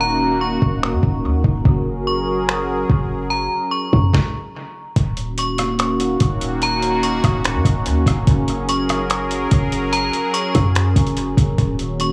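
A gritty, pitched-down trip hop sampler-style drum kit sits up front from 0.6 seconds. Its thumpy kick, medium-tuned snare, rim click, hi-hat and finger snaps trail dub echo through an ethereal, melancholic cloud-rap piece at 145 BPM in a half-time 4/4 feel. Around it, a detuned sawtooth pad evolves through Ebm7 and Gbadd9 chords with chorus and sidechain pumping, a deep, boomy 808-style bass with a noise layer anchors the Eb minor key, and a metallic, inharmonic FM bell rings out a high melody through chorus, low-pass filtering and dub echo. The mix is echo-heavy with light reverb and small room ambience, and a brief stop from 4.1 to 5.0 seconds breaks the flow before the second section.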